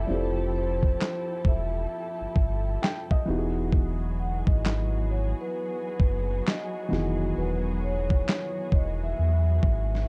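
A dreamy, cosy lo-fi hip hop passage, cut from a longer piece, opens with a soft-mallet vibraphone carrying the melody over a felt-muted upright piano, a veiled con sordino string section and a deep, sine-like sub bass with an added octave. Drums from a dusty, sampler-style soul kit enter at 0.8 seconds, bringing a thumpy kick, a medium-tuned snare and handclaps in a gritty, compressed, tape-warm sound that sits up front with the full, sustained bass. The tempo is a slow 66 BPM in 4/4 with a lazy swing on the sixteenths, and the harmony moves from Fmaj9 to Emaj9 at 3.3 seconds. The vibraphone rings with a mellow, metallic tone, its motor off, colored by tape echo and plate reverb. The intimate, vintage piano, with its action noise audible, plays a fill from 2.4 to 3.7 seconds, while the lush bowed strings linger distant and dark with gentle vibrato. The production is dark and dry overall, with a low-pass haze over the vibraphone, piano and strings.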